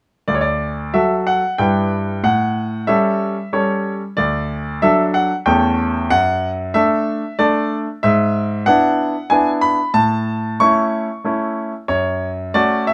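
A bright grand piano carries this cheerful, playful classical-period sonatina alone, sounding brilliant and natural, with short sustain and an up-front presence. Moving at 93 BPM in a straight 3/4, the piece sits in D major before turning toward A major at 8.0 seconds, and the tuning rests at A4 = 442 Hz. Across its span from D2 up to C#6, the piano moves through clear harmonies such as D, Em/G, A7 and D/F#, then E7/G# and A, touching F#m near the close. A light reverb gives the bright piano a little air. The passage runs from 0.3 to 12.9 seconds and is cut from a longer piece.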